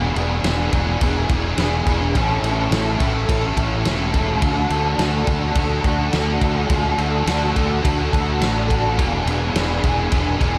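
A biting, double-tracked overdriven guitar riff with ensemble chorus opens this blissful, hazy shoegaze and dream pop excerpt at 105 BPM in D lydian, joined at once by a punchy fuzz bass and, from 0.2 seconds, a loose indie drum kit with a fat snare, punchy kick, ride cymbal and a rolled-off top, all soaked in a huge ambient reverb as the chords move from E7 through A and D back to E7.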